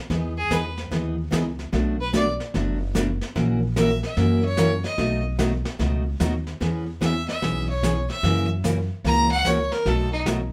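A clear, earthy bowed fiddle with light vibrato takes a playful solo in this swinging western swing country fragment at 148 BPM in E major, entering at 0.4 seconds over a full-bodied picked jumbo acoustic guitar, a woody, growly pizzicato upright bass and a vintage brush drum kit with a punchy kick and a rolled-off top, all set in a moderate club reverb.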